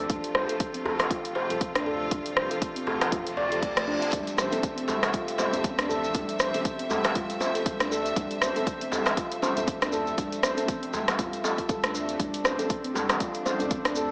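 Earthy and driving, this afro house excerpt moves at 119 BPM in 4/4 with a 16th-note swing of 57% and sits in D minor over a single Dm7 chord. A rich, biting symphonic string section holds sustained chords close to the listener with light vibrato, while a deep, round sine sub bass sits in the background, both breathing with sidechain pumping. Up front, a ringing, meditative handpan plays arpeggios with digital delay and the same pumping, its tone shaped by a boxy small room. The punchy, tape-warm electronic kick and a layered house drum kit of hi-hat, rim click and toms drive the groove, joined by a tight, cracking djembe heard at a distance. A background reverse cymbal sounds from 3.3 to 4.1 seconds, and at 4.1 seconds bright, distant congas and grainy, band-limited maracas join. Light small-room reverb and a small speaker sound give the mix a compact, lo-fi character.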